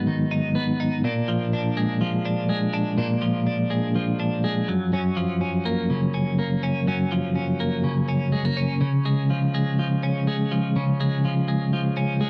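A bright, twangy twelve-string electric guitar plays alone and up front throughout this short indie pop excerpt, its clean, picked tone compressed and shimmering with harmonic tremolo across a range from Gb2 to Eb4. At 124 BPM in a straight 4/4, the wistful, bittersweet passage moves from Abm7 to Bb7 and then Gbmaj7 before shifting to a new section on Db at 8.8 seconds. The sound is dry and close, in the manner of a 1970s studio recording, with a touch of digital ambience.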